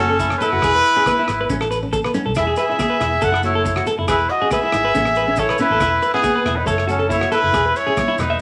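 Highlife guitar band music, sunny and joyful at 139 BPM in E major, with a warm, close-miked trumpet leading the melody up front over a breathy, distant alto saxophone second line, bright twangy clean electric guitar arpeggios, a dark foam-muted fingered bass, a very quiet boxy flamenco guitar, a damped 70s drum kit with tight kick and rim clicks that plays a fill at 1.9 seconds, and soft background congas and grainy maracas, all in a short excerpt cut from a longer piece and bathed in large studio reverb.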